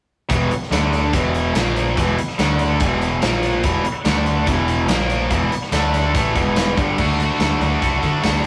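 A straight, driving 4/4 classic rock groove swaggers through this short cut, as two bright, picked distorted guitars, one tight and up front and the other compressed, scooped and set in the background, play a riff cycling E5, D5 and A#5 before settling on Em and moving to D at 7.0 s, over a growling overdriven bass and a big, punchy acoustic kit of kick, mid-tuned snare, hi-hat, crash and tambourine with a rolled-off top, the band heard in a rough rehearsal-room recording with moderate small-room reverb.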